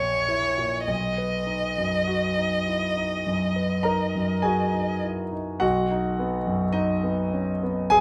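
A single bowed violin carries the melody in this brief romantic classical duo. It is heard from the start until 5.0 seconds, sung with vibrato, a soft attack and gliding portamento, and shaded so it seems slightly distant even while sitting up front. A concert grand piano supports it throughout the 8.0-second fragment, reaching from deep bass notes into the upper register, and its intimate, natural tone carries a touch of audible key and hammer action. The tempo is a slow 51 BPM in 4/4, played with a flexible rubato feel in B major, moving from an A# diminished chord to B major within the first second. The mood is tender and lyrical, and a moderate large-studio reverb lends the pair a gentle sense of space as the piano continues alone after the violin falls silent.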